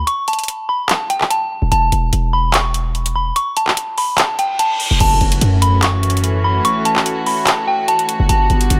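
A half-time trap groove at 146 BPM drives this dark, brooding hip hop excerpt in F# phrygian, with a punchy, heavy 808-style bass sitting up front beside a produced trap kit of metallic hi-hats, handclaps and crash cymbal that carries a tape-softened edge. Above them, a delicate, tinkling FM synth bell with a vintage warble carries the melody through chorus, low-pass filtering and digital delay. A reverse cymbal in the background leads into an electronic impact at 5.0 seconds, where a bowed studio string section with reedy, gut-string tone and light vibrato enters on sustained chords, the whole mix sitting in a light reverb.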